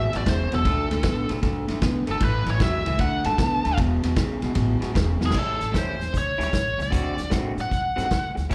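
Electric blues shuffle at 153 BPM in A mixolydian, swaggering and soulful, cut from a longer live club gig heard through the venue's PA, where a bright, biting lead guitar with overdrive and slapback echo solos up front over a slightly broken-up, lo-fi riff guitar from a small old amp, woody pizzicato upright bass and a vintage drum kit with a punchy kick and dark cymbals, which enters at 0.1 seconds and plays a fill at 5.2 seconds just before the change to A7 at 5.4 seconds.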